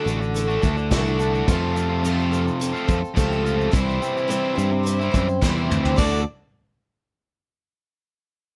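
This short excerpt of folk rock with a heartland rock streak moves at a jangly pace in a straight four, with a warm mood. A shimmering, octave-doubled twelve-string acoustic guitar sits up front with fresh-stringed brightness, while a crunchy, double-tracked overdriven electric guitar carries the riff beneath it. A punchy electric bass, direct and amped, anchors the low end, and a soft brush kit sounds distant and roomy, its medium-tuned snare and punchy kick joined by hi-hat, crash and toms, with a drum fill from 5.4 to 6.0 seconds. A grainy egg shaker sits in the background throughout. The chords move from Dadd9 through F and C before returning to Dadd9 at 6.0 seconds, where a clear, close-miked harmonica enters with light vibrato and scooped notes as the recording cuts off, all in a dry sound.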